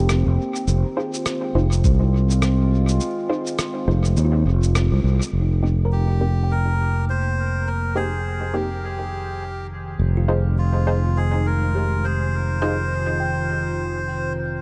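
A growly, overdriven fingered electric bass sits up front in this meditative, spacious ambient dub excerpt in F minor at 103 BPM, joined by a warbling, detuned analog pad, a woody kalimba in the background with dub echo, muted filtered chord stabs, a muffled electronic rim click and cabasa, a thumpy kick drum, and a reedy, breathy melodica that enters at 5.9 seconds, all in a dark production with little reverb.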